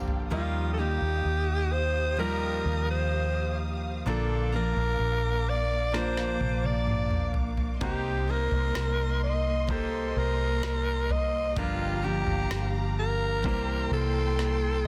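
Heard through a dense, heavily limited modern master with a studio ambience, this tender, heartfelt pop ballad fragment is cut from a longer piece. A raspy alto saxophone carries the solo melody from 0.3 s, sitting up front with a bright, gritty pop tone, vibrato and delay. Beneath it, a clear concert grand piano with deep bass and short sustain plays the accompaniment, while a warm studio string section holds lush, bowed chords with expressive vibrato and a smooth top. A picked steel-string dreadnought guitar adds full-bodied arpeggios in the background, and a vintage fingered electric bass sounds dark, round, punchy and foam-muted, pushed up front. The smooth R&B drum kit, electronic and produced with a knocking kick, woody snare and toms re-recorded in a small room, plays briefly at the start, then returns with a fill at 5.9 s and plays another fill at 14.4 s. The harmony moves from Ebadd9 through Bb, Cm7 and Gm7 to C7.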